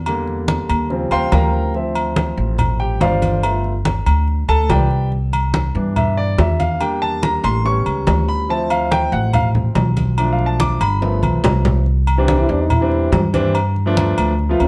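Afro-Cuban jazz with a sunny, danceable feel, this fragment of a longer piece sets a woody pizzicato upright bass and a deep-voiced concert grand piano up front, the piano soloing over ringing agogo bells and timbales and bright, low-tuned congas until a drum fill carries it to 11.9 seconds, when a mellow, breathy trombone with light vibrato takes a short solo from 12.3 seconds, all in a moderate studio reverb.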